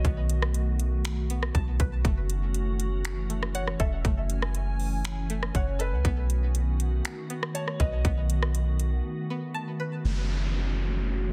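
A half-time trap beat of hard-clipped kick, metallic hi-hats, finger snaps and rim clicks drives this hazy, ethereal cloud-rap excerpt, sitting up front beside a deep, round 808-style bass that carries on after the drums drop out at 8.9 seconds. A glassy FM pad holds slow-attack chords with ensemble chorus, reverb and sidechain pumping, while a twangy, string-like resonator pluck weaves chorused, delayed arpeggios over the B7 and F#m7 changes. A soft, felt-muted upright piano offers an intimate, filtered melody with digital delay, and an electronic downlifter enters at 10.0 seconds under a filter sweep in a dense, heavily limited master.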